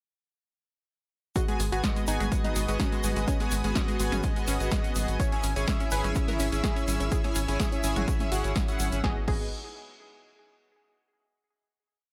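Progressive house at 125 BPM in G# minor, driving and bittersweet, built as a short drop that runs from 1.4 seconds to 9.0 seconds before settling on a final chord. A punchy, tape-warm electronic kick sits up front in four-on-the-floor, joined by a programmed house kit of snare backbeat, finger snaps, closed and half-open hats and a crash, while a grainy, bright tube shaker plays hand-played sixteenths in the background. Entering at 2.2 seconds, overdriven electronic congas and toms form a tribal loop low in the mix, and a tight sequencer bass on G#1, saturated through tube warmth and pumping with the sidechain, gallops in sixteenths from 1.6 seconds. Above it, a detuned unison pluck spins a repeating sixteenth-note riff over a pedal note with tape echo, and a glossy, retro chorused polysynth adds pulsing gated stabs in open voicing, also echoed and pumping. A lush, full-bodied supersaw pad holds slow-attack chords in the background, moving from G#m7 to C#m/G# at 5.2 seconds and returning to G#m7 at 9.0 seconds, all in a dry, close sound with little reverb.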